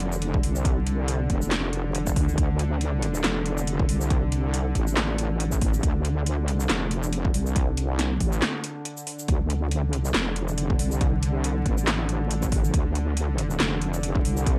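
Brooding and meditative, this deep dubstep excerpt at 139 BPM in D minor rolls in a swung half-time feel, with a heavy, detuned wobble bass up front under a tense, string-like drone with vibrato, while a gritty, dry sound and vinyl crackle frame a deep overdriven kick entering at 0.3 seconds and a punchy snare, metallic hats, handclaps and shaker, with a break from 8.4 to 9.3 seconds.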